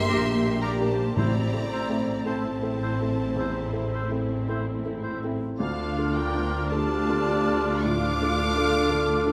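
Rubato and unhurried at 54 BPM in 4/4, this cinematic film score for orchestra in D minor carries a longing, bittersweet mood through a short passage cut from a longer piece. A lush violin section sings the melody high above, with rich vibrato and a smooth top, while a second, clear and distant violin section shapes a supporting line beneath it. Woodwinds add their own second lines from 0.1 s: a solo oboe with light vibrato, a very quiet, vintage-toned clarinet, and an airy flute section sitting in the background. Violas, cellos and double basses fill out the bowed harmony and bass, joined by a soft, felt-muted upright piano accompaniment and mellow French horns holding tight sustained chords. Round, soft-mallet timpani sound from 1.2 to 2.8 s as the harmony moves from Gm to Am before settling on Dm, and a moderate scoring-stage reverb gives the ensemble a sense of space.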